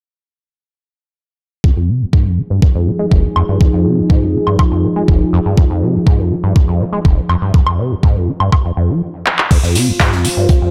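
A squelchy, resonant sawtooth acid bass riff and an overdriven, thumpy kick open this playful, raw acid house cut at 122 BPM on Fm7, joined by a moody, detuned analog pad pumping under sidechain and a tape-warm drum machine with metallic hats, handclaps, woodblock and crash, before a stop at 9.0 seconds and a drum fill give way to a filter sweep on the bass, a faint high-tuned acoustic snare and hi-hat in the background, and a warbling, nostalgic lo-fi pad entering at 9.8 seconds.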